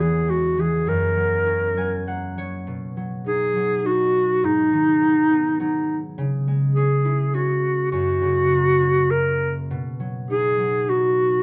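A rubato 3/4 sway at 103 BPM gives this short children's lullaby in B major, tuned slightly flat to A4 = 438 Hz, an innocent, gentle mood. A breathy, jazz-styled clarinet carries the melody up front with vibrato, scooped notes and a smooth top. A warm, ringing concert harp accompanies it, fingerpicked, with a fill from 1.5 to 2.7 seconds, all set in light reverb that suggests two players in one room.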